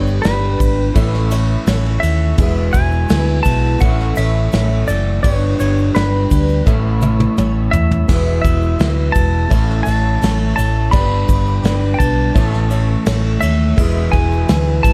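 Folk rock with a heartland rock lean, this jangly, open-road excerpt moves at a straight 84 BPM in A major, with a bright, twangy lap steel carrying the melody through tape echo over a slightly broken-up electric guitar riff bathed in lush chorus. A round, punchy picked bass and an up-front brush kit with bright cymbals anchor the groove, joined by a shimmering, octave-doubled twelve-string acoustic, a very quiet slow-rotary tonewheel organ, a mellow upright piano and a grainy tube shaker in the background. The chords cycle through G, A and E in a small, dark-toned room, with a drum fill from 6.7 to 8.1 seconds.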